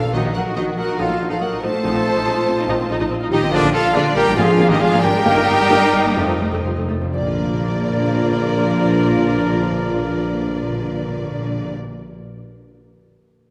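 Set in a wet concert-hall reverb, this cheerful, spirited classical excerpt in Bb major moves in 4/4 at 118-144 BPM and slows between 2.7 and 7.1 seconds, with a timpani fill closing that stretch. A lush, expressive violin section carries the melody with a soft attack. Very quiet violins and a pure, mellow flute section share a second line, while close violas and ringing, fingerpicked harp arpeggios accompany them, and rich cellos, bowed double basses and a background tuba hold the bass. A solo trumpet adds soft-edged stabs over very quiet sustained chords from dark, distant French horns and tight, clear trombones, as calf-headed timpani struck with medium mallets sit close in the mix.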